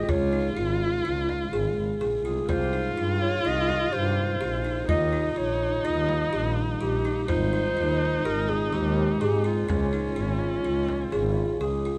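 A restless, hypnotic pulse in 5/4 at 125 BPM drives this short contemporary chamber piece, cut from a longer work, with a straight feel that keeps the uneven meter circling. A buzzing kalimba spins arpeggios with a woody, thumbnail-plucked ring, while a deep frame drum, struck with hard hands and sitting in the background, adds a compressed, saturated thud. A mellow clarinet carries the melody in a smooth, classical solo voice, and a viola played by one bowed player traces a second line with vibrato, portamento and a slightly boxy, expressive tone. Beneath them, a bowed double bass played sul tasto gives a pure, floating low end, and a very quiet ambient pad holds dark, warbling sustained chords with chorus and its own reverb. The harmony moves from Db through Cm7, Ebadd9 and Abadd9 before returning to Db near 9.7 seconds, all captured with close, detailed microphones and little room sound.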